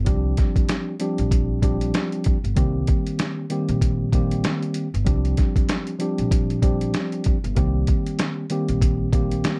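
A dark, lightly reverberant production frames this brief cut from a longer boom-bap hip-hop piece in C minor, set at 96 BPM with a swung 16th-note feel over G7sus4 and Cm7 chords. A mellow tine electric piano, clean and up front, carries the accompaniment through cassette tape coloring, filtering and plate reverb, while a woody pizzicato upright bass anchors the low end. The compressed, pitched-down sampler-style drum kit sits forward with a thumpy kick, a medium-tuned snare and hi-hat, and its vintage 12-bit grit deepens the reflective mood.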